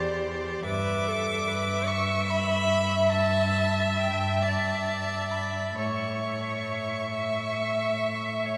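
Tender and serene, this is a fragment of a slow, romantic classical movement for string quartet, flowing in 12/8 with a rubato feel. The first violin carries the melody high above the ensemble, its bowed tone focused and vibrant with vibrato, heard from a slight distance. Beneath it, the second violin traces a smooth, even inner line, while the viola supplies accompaniment in a clear voice with light vibrato, intense yet smooth at the top. The cello anchors the bass with a rich, close, up-front sound that sits nearer the listener than the violins. The harmony moves from C over E to E minor over G at 0.7 seconds, then settles on A at 5.8 seconds, and the whole passage blooms in a long, wet cathedral reverb typical of a church or concert hall.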